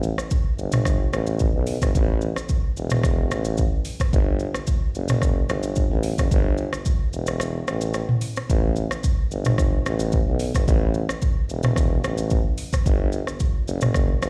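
The recording sounds like a dry source played over a big sound system in a bare room, wrapped in large studio reverb. This afrobeats excerpt moves at 110 BPM in a straight 4/4, with a romantic, sunny mood. An electronic, produced afro-pop drum kit sits up front, with a deep kick, metallic hi-hats, rim clicks, shaker and toms. A clear, present tuba takes the bass role as a pop-style solo voice, also up front, with vibrato in its low register. Both parts run from start to finish, with a short break between 7.4 and 8.5 seconds.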